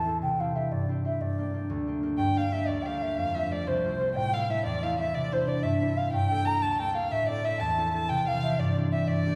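Wild, dark and lively, this Celtic folk jig moves at 122 BPM in dotted quarters, in 6/8 with a straight feel and set in G dorian, tuned to A4 = 438 Hz. A mellow, hollow baroque flute carries the melody from the start, its wooden, pure tone tongued and touched with vibrato, sounding distant in the mix. Beneath it, an up-front concert harp supplies the accompaniment with ringing, fingerpicked acoustic chords that move from C and Gm through F, Am and Cadd9 to Gmadd9 before returning to Am and C. At 2.2 seconds a dark violin enters as a second line, played by one bowed player, in the same register as the flute and quieter than it, with a soft attack, expressive portamento, vibrato and a smooth top. The whole is bathed in a wet reverb with a 1.7-second tail, as if heard in a church or concert hall, and the passage is cut from a longer piece.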